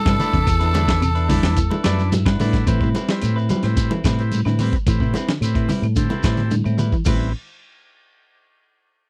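A straight 4/4 afrobeat groove at 109 BPM in A dorian drives this defiant fragment of a longer piece, anchored by a gritty, compressed sampler-style drum kit with a thumpy kick, medium-tuned snare, hi-hat and crash sitting up front beside a dark, round fingered electric bass. Congas with soft hands ring in the background alongside a grainy shekere, while woody claves click very quietly. A raspy, growling tenor saxophone carries the melody, joined by a breathy alto saxophone on a second line, both playing only until 2.1 seconds. Two clean semi-hollow electric guitars fill the middle: one dark and fingered, playing arpeggios in the background, the other picked and warm, adding stabs, while a vintage, buzzy combo organ accompanies and throws in a fill from 1.6 to 2.7 seconds. The harmony moves from G69 to Am9 at 2.7 seconds, and the whole band is captured dry and close in a 1970s-style studio sound.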